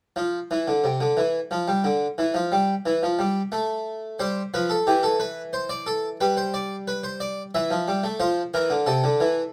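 Classical baroque-style two-part invention for solo harpsichord in F major at 90 BPM in 3/4, stately yet lively, where a brilliant, airy Italian-style instrument with three sets of strings sounds full and up front through close, detailed microphones and light reverb, spanning C3 to E5 from 0.2 to 9.5 seconds in this brief cut from a longer piece, its harmony moving from C through D5, G and Emadd11 to F.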